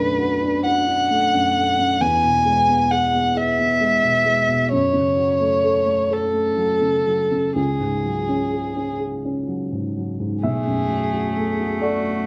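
A dark, woody violin and a mellow upright piano begin together, the violin singing a reflective, melancholic melody with vibrato and a smooth top while the slightly detuned, boxy piano supports it with long-sustaining accompaniment. This neoclassical piece for piano and strings moves in a slow, rubato 6/8, with both instruments placed up front in a live room. The harmony drifts from Bm7 through E and F#m to a suspended C#sus4, giving the passage an unresolved, wistful pull. At 10.4 s, as the progression returns to Bm7, a single cello enters quietly beneath the violin with a second line, its pure, floating sul tasto tone adding a soft glow. The large studio reverb is wet and lingers around the players, and the recording, tuned slightly below standard pitch at A4 = 439 Hz, is cut from a longer work, ending at 12.3 s.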